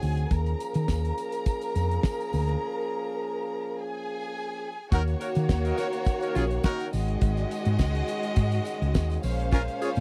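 A steady, straight 4/4 disco groove at 104 BPM in Eb minor drives this danceable, glamorous passage, cut from a longer piece, with a damped 70s drum kit of hi-hat, kick and a fat snare sitting dry and up front beside a dark, round, punchy hollow-body short-scale electric bass played with the fingers. A lush, bowed violin section carries a second line with expressive vibrato, while a distant, roomy French horn section holds sustained chords beneath it. A jingly tambourine slips in at 0.3 seconds, compressed and saturated in the background. After a break from 2.6 to 4.9 seconds, a tight pop-style horn section enters at 4.9 seconds with smooth-topped stabs as the harmony moves from Bbm7 through Ebm7 and Ab7sus4 to Bbm9. The sound is dry and close, in the manner of a 1970s studio, with little reverb and a rolled-off top on the drums.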